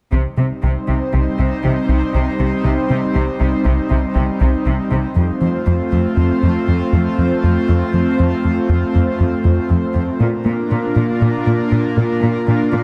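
A punchy, funky analog bass riff with a fast, decaying filter pluck drives this tense, vast cinematic passage in 5/4, cut from a longer piece and moving from C minor to F at 5.2 seconds and B-flat at 10.2 seconds. An airy, breathy pad sits up front with slow-attack sustained chords thickened by chorus, while a lush symphonic cello section bows a smooth, even bass line with vibrato beneath it. Close, detailed microphones and light reverb frame the whole piece.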